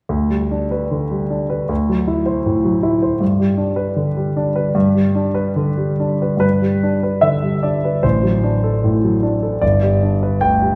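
A worn, natural-toned concert grand piano carries this brief romantic character piece on its own, sounding from 0.1 to 10.8 seconds across a span from G1 to G5 with a deep bass. The mood is passionate yet hopeful, set in G major at a flexible 67-81 BPM in 2/4, with rubato giving the phrasing an expressive push and pull. The harmony opens on G over D, passes through a D9 and settles on G, and a contrasting second section arrives at 6.4 seconds, moving through D7 over A before resolving home to G at 9.6 seconds. The piano sits up front in the mix, yet the listener seems placed further back in a recital hall whose wet reverb lingers around each chord. Cut from a longer work, the passage feels like a fleeting glimpse of a larger, heartfelt statement.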